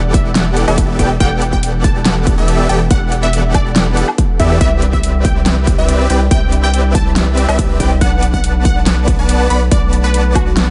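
A dry, tightly produced future bass excerpt in E minor at 141 BPM with a half-time feel, dreamy and bittersweet, where a saturated sine sub bass sits up front under huge detuned supersaw chords pumping against a punchy layered kick, a dubstep kit with a huge snare, metallic hats and woodblock, a bright sawtooth unison pluck melody run through phaser and digital delay, a very quiet wave-folded pluck arpeggio, and a mellow, ethereal pad holding Em11, Cmaj9 and Bm7 beneath it all.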